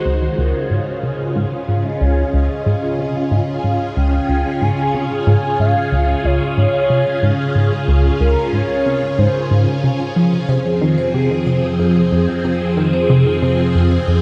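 A tight, driving sequenced synth riff pulses in straight 4/4 at 92 BPM, its detuned sawtooth and pulse-wave tones plucked and mellowed by chorus and tape echo. Above it, a swirling, bright phased string machine holds sustained chords that shift from Db to Fm at 10.5 seconds, while an expressive, warbling portamento lead sings a smooth, dark melody with vibrato until 9.8 seconds. A ringing, metallic vibraphone with soft mallets sounds at the start and returns with arpeggios from 10.5 seconds, and this expansive, hypnotic stretch of ambient space music, cut from a longer piece, floats in a vast space soaked in huge reverb.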